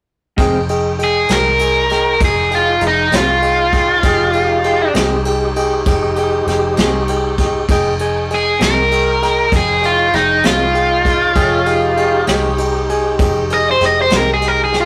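A slow 12/8 blues with a straight feel sets a smoky, soulful mood in this short passage cut from a longer piece, held on a single Fm7 chord. A vintage brush kit sits distant and roomy, with a tight kick, a medium-tuned snare and a ride cymbal, under a dark, foam-muted fingered electric bass that sounds round and punchy. A bell-like tine electric piano carries the chords cleanly and directly, while a tonewheel organ sustains fat, lightly driven chords in the background through a slow rotary speaker and chorus vibrato, its key click just audible. Deeper down, a picked electric guitar through a small old amp adds lo-fi, slightly broken-up accompaniment with tremolo and drops out at 14.3 seconds. From 1.0 seconds a biting, overdriven lead guitar takes the solo up front, standing clearly above the band. Light reverb and the saturated sound of a rough rehearsal room give the whole recording a lived-in, intimate character.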